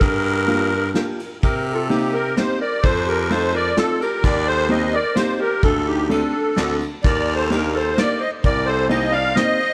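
A shimmering, reedy musette accordion with analog delay leads this whirling, bittersweet musette waltz at 128 BPM in a rubato 3/4, over a raspy, close-miked baritone saxophone bass line and a soft, distant brush kit with dark cymbals, joined at 0.5 seconds by a dark, clean hollow-body electric jazz guitar and at 1.4 seconds by a smooth clarinet second line, all cut from a longer piece in light reverb over a Gm7 to Cm7 progression.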